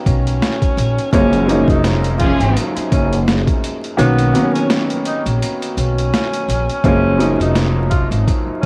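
A gritty, pitched-down boom-bap beat swings lazily at 84 BPM in 4/4, its thumpy kick and high-tuned snare overdriven and tape-worn, with the kick dropping out from 4.0 to 6.8 seconds while a growly, woody pizzicato upright bass sits up front beneath a slightly detuned upright piano voicing Bmaj9 and F#maj9 chords in F# major. Over this soulful, confident groove, a breathy, whispered tenor saxophone carries a distant, intimate jazz melody full of vibrato and scooped notes, touched with analog delay. A lush bowed string stab flashes briefly between 2.2 and 2.7 seconds, all set in a small-room cassette home recording laced with vinyl crackle, in this short cut from a longer piece.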